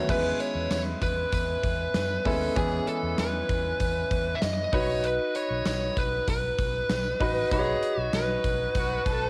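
A home-recorded cassette sound with light studio reverb frames this short, nostalgic slice of 1980s-style pop, glossy yet worn at the edges, moving at an easy, straight pulse in four. A fuzz lead guitar carries the melody up front, its picked, compressed tone thick with distortion. Beside it, a clear concert grand piano plays the accompaniment with an open, deep-bottomed presence, while a vintage fingered electric bass sits low underneath, dark, foam-muted and round. The gated drum kit brings a punchy kick, a medium-tuned snare, hi-hat, tambourine and bright crash cymbals, all caught in an airy stone room with a cassette tape grain. The harmony moves from E6 to B, and just before the cut, at 8.8 seconds, a distant studio violin section enters with a lush, bowed, vibrato-rich line.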